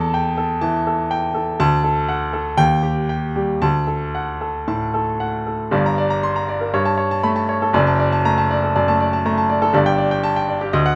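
Classical virtuoso piano study, passionate and agitated, heard as a short 11-second cut from a longer piece in which a clear, polished baby grand plays solo across a span from F#1 to C6. The beats are uneven and pushed about with rubato, and a second section takes over at 5.7 seconds, moving through G minor and D harmonies before closing on a G5 chord near 9.7 seconds. Close, detailed microphones keep the instrument present and up front, set in light reverb.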